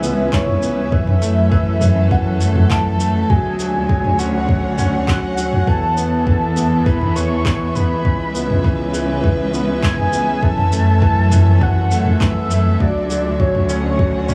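Set in a small, close room, this hypnotic, cinematic piano-and-strings electronica cut moves at 101 BPM in F# minor, cycling through C#m7, F#m7, Dmaj7 and Esus4. A velvety, detuned synth lead with chorus and tremolo sings the melody over a brilliant baby grand piano riff trailed by digital delay, while a bowed chamber string section holds smooth, even chords. Underneath, an expressive cello section carries the bass with vibrato, portamento, tube saturation and sidechain pumping, joined by a layered deep house kit of handclaps, shaker and toms and a soft electronic kick that enters at 0.3 s.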